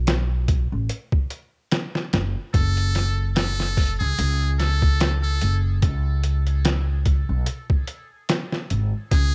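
Melancholic and brooding, this trip hop excerpt in F# minor moves at 73 BPM with a swung 16th-note feel, opening on a B5 chord before settling on F#m. A woody, pizzicato upright bass with tube saturation sits up front from the start, joined by a gritty, pitched-down sampler-style drum kit with a thumpy kick, medium-tuned snare and hi-hat, set in studio reverb. At 2.5 seconds a buzzy, close-miked trumpet with a metal mute enters lower in the mix as the solo voice, playing forceful jazz-style lines with scooped notes and light vibrato through dub echo, all within a dark, warm production.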